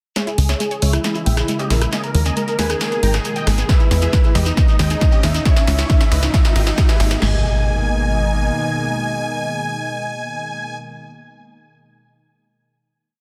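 Driving and soaring, this short uplifting trance build has a huge, detuned supersaw lead and a velvety second synth line riding repeating riffs over a lush unison pad, a bright analog pluck arpeggio and a funky, up-front plucky bass, while tape-warm drum machines and a grainy shekere push the rise, with a four-on-the-floor kick and crash arriving at 3.7 seconds, before the drums drop out at 7.2 seconds and the final chord rings to 10.8 seconds.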